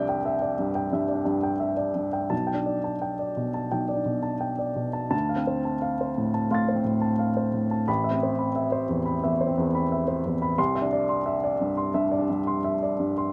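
A solo upright piano, woody and up front with audible action noise and long sustain, opens an intimate, wistful neoclassical minimalist passage in 4/4 at a rubato 88 BPM, tuned to A4 = 441 Hz and spanning A1 to A6, moving through Cadd9, Gadd9/B, Dm7 and Amadd9 before settling back on Cadd9 at 10.6 seconds, all set in light reverb in this outdoor recording cut from a longer piece.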